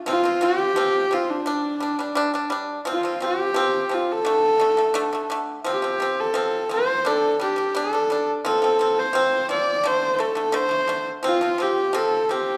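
Vast and galloping, this Mongolian folk passage moves at 86 BPM in a straight 4/4 and sits in an F gong mode. A single close, husky horsehead fiddle carries the melody from 0.1 to 12.6 seconds with an earthy, airy bow, light vibrato and portamento, while a percussive pipa played with fingerpicks lays down dry arpeggios a little lower in the mix. Both sit up front in a reverberant recital hall, and the music is cut from a longer piece.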